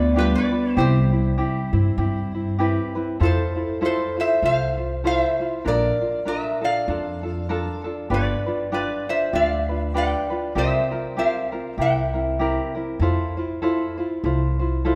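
A metal-body resonator slide guitar carries the melody up front, its bright, nasal tone shaped by fingerpicks and slide, in this languid, sunny Hawaiian piece cut from a longer performance. It moves at 98 BPM in 4/4 with a relaxed swing on the eighth notes, starting in C major before shifting to F major at 3.2 seconds, with chords such as Cmaj7, Fmaj7, Bbmaj7 and C7sus4 giving the harmony a lush color. A tenor ukulele, thumb-plucked and light, supplies the accompaniment throughout, while a pizzicato upright bass with steel strings adds a woody, thumpy, dark low end. A vibraphone struck with soft mallets and played with its motor off contributes a mellow, ringing second line, heard only at the opening and again from 11.8 seconds. The slide guitar drops out at 12.7 seconds, leaving ukulele and bass to finish, and a generous concert-hall reverb gives the whole recording a spacious, wet sheen.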